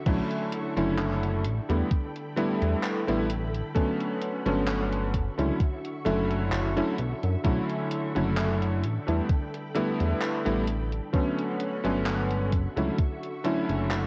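A clear, vintage electric grand piano sits up front with chorused unisons, 12-bit sampler grit and analog delay, carrying the accompaniment over a glossy, nasal chorused synth bass and a thumpy, tape-warm electronic kick in this nostalgic, melancholic vaporwave excerpt at 65 BPM with a light 16th-note swing. A gated 80s digital drum machine adds crash cymbal, handclaps and hi-hat, while a silky string machine holds slow-attack chords in the background through the progression from Bm11 to A9sus4, Gmaj9#11 and Dmaj9/F#. The whole excerpt has a cassette-tape character with light reverb, and the kick drops out at 13.2 seconds as the other parts carry on to 14.1.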